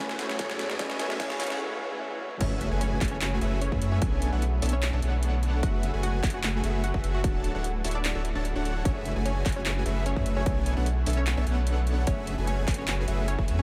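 Dreamy and lush, this half-time future bass excerpt in F# minor at 149 BPM opens with a short build-up in which a riser, drum fill and a muted, felt-softened upright piano sit within a pumping wall of huge detuned supersaw riff, saturated sub bass, punchy overdriven electronic kick, a dubstep kit with deep snare, claps, hats, toms and crash, a wave-folded unison pluck melody with diffuse delay, and a shimmering granular pad. At 2.4 s it drops as the piano falls away and airy arpeggios from a chorused lead enter, all bathed in a long, ambient reverb over rich F#m11, Dmaj9 and Bm11 chords.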